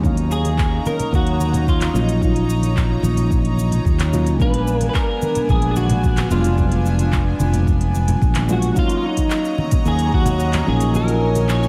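Opening on an Ebm7 chord, a mellow, round FM electric piano with chorus and tape echo plays alongside a soft, floating studio string section holding sustained chords, while a bright fretless electric bass sits up front and a deep electronic kick anchors a smooth-hatted deep house kit with cabasa and handclaps. This is a wistful sunset chillout excerpt at 110 BPM in 4/4 with a straight feel, set in Eb minor. Very quiet acoustic congas add a small-room texture underneath, and at 0.3 seconds a clean, picked electric guitar takes the melody, colored by ensemble chorus and analog delay. The harmony moves to Bb7b9b13 before settling back on Ebm7 for the closing stretch at 8.8 seconds, and the kick drops out at 10.2 seconds. A moderate plate reverb soaks the mix in a dreamy haze, and the drums carry their own studio reverb.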